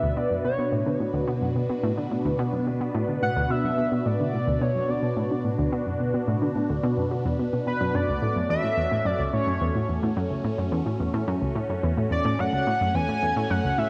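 A steady, straight 4/4 pulse at 108 BPM drives this cosmic, expansive slice of ambient, sequencer-driven space music in B minor, where a round, wave-folded analog pluck riff sits low and up front beneath a swirling, detuned phased pad holding sustained chords and a shimmering, retro pulse-width lead melody with vibrato, chorus and delay, all bathed in a 2.5-second plate reverb and dark production as the harmony moves from Bmadd9 to F#m at 7.9 seconds.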